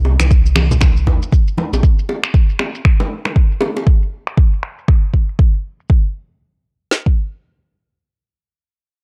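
Driving and earthy, this afro house excerpt moves at 118 BPM in 4/4 with a swung sixteenth-note feel in C minor. A dark detuned saw bass opens the piece, deep and rumbling with a beating, saturated sawtooth edge, a fast attack and sustained notes between Bb1 and Eb2, pumping under sidechain before it drops out at 1.8 s. Acoustic hand drums crowd the opening moments: low-tuned congas with thick skins and soft hands sit close and dry, while tight, high-tuned bongos struck with hard hands ring in a live room until 3.8 s. Electronic finger snaps and shaker add layered, produced texture through low-pass filters, and the deep house drum kit stands up front with a deep kick and a woody snare, carrying on until 7.2 s. A filter sweep on the drums runs through the first section, which gives way to a new section at 5.9 s. The whole has a digital ambience and a dry, gritty hardware character.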